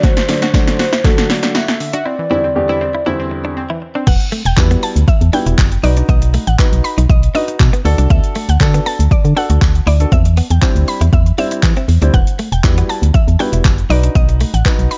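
Dance-pop in E minor at 119 BPM, bittersweet and energetic, this portion of a longer piece opens with a build-up where a hollow, woody clarinet-like synth lead, a warbling vintage analog pluck playing arpeggios, a baby grand piano and a clean, direct-recorded electric guitar riff sit over a drum fill, then a brief break from 2.1 seconds. The drop lands at 4.1 seconds, bringing in a dark, percussive organ-like FM bass up front and a round, mallet-like synth pluck melody with tape echo, while the deep house kit drives on with a deep kick, punchy overdriven snare, claps, hi-hat and shaker, alongside a very quiet jingly tambourine that has been present since half a second in. The piano and pluck pump with the sidechain in a digital ambience that keeps the top end soft, the guitar tucked in the background.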